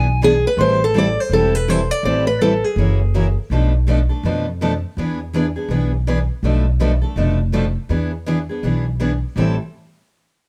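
This acoustic string swing excerpt in the jazz manouche style is virtuosic and fiery, carried by a brisk swung pulse. A bright, boxy parlour guitar with fresh strings sits up front and picks the melody from the opening until 3.4 seconds. Beneath it, two more picked acoustic guitars keep up the accompaniment through 9.6 seconds: one a full-bodied jumbo, the other a warm parlour model with audible finger squeak. An up-front upright bass, played pizzicato on steel strings, anchors the bottom with a woody, dark tone. The harmony moves from E7 into Am7 and F#7, then cycles between Bm7b5 and E7 before settling back on Am7, all set in a light reverb.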